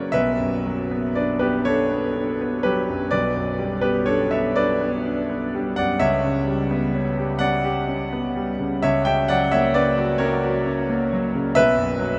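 Bathed in a huge, echoing reverb that suggests a vast hall, a clear, smooth concert grand sits up front with a deep bass and a vintage character. This mournful, yearning romantic nocturne for solo piano unfolds in a flexible, rubato 12/8, moving from a B minor opening chord through a half-diminished chord and a dominant seventh before settling on a bare open fifth near 11.6 seconds. The passage is a short fragment cut from a longer piece.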